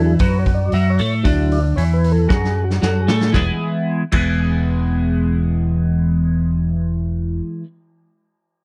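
A roomy studio sound frames this hazy, hypnotic psychedelic rock fragment at 115 BPM in E mixolydian, where a lightly overdriven tonewheel organ with key click and slow rotary speaker solos over a Dadd9 chord until 3.3 seconds, while a bright, twangy, double-tracked twelve-string electric guitar riff with phaser, a round, dark fingered bass and a distant vintage drum kit with dark cymbals and a punchy kick carry on, the drums playing a fill from 2.3 seconds before the harmony moves to E and they drop out at 4.3 seconds.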